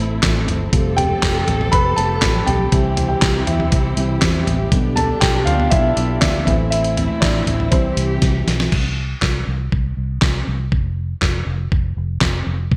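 A bright 1980s-style digital sheen and moderate plate reverb frame this uplifting, hopeful piano-driven pop excerpt at 120 BPM in C major, where a dark, mellow baby grand with long sustain plays a solo over distant, expressive bowed studio strings with vibrato and portamento until both stop at 8.7 seconds after a drum fill, leaving the round, punchy foam-muted electric bass and an up-front, gritty, compressed sampler-style soul kit with thumpy kick, fat snare, handclaps and gated reverb to carry on to the end at 12.8 seconds.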